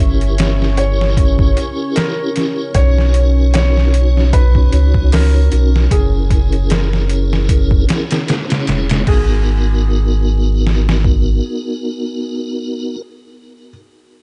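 Up front, a gritty, pitched-down sampler-style drum kit with a thumpy kick, medium-tuned snare and overdrive anchors this cinematic, hypnotic trip hop excerpt at 76 BPM in G# minor, alongside a deep, round sine sub bass. A felt-muted upright piano carries a soft, intimate melody with audible action noise, while a piping tonewheel organ with key click, chorus vibrato, fast rotary speaker, tremolo, 12-bit sampler grit and tape echo accompanies it. Underneath, a moody, detuned analog pad with chorus sustains chords through Gdim7, Bmaj9 and F#7 until 9.1 seconds, when the harmony moves to G#m7 in a dark, warm mix.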